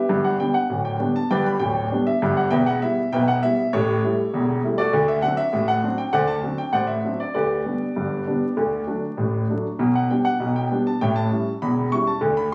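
A straight two-beat pulse carries this playful, cheerful ragtime passage, cut from a longer piece, in which a solo grand piano, polished, present and up front, spans deep bass to high treble over 12.5 seconds, moving through G, Em, A7 and D7, then on through G/D, D and G/B to close on A7, all heard as if captured on a phone in a club, with light reverb, vinyl crackle and compression.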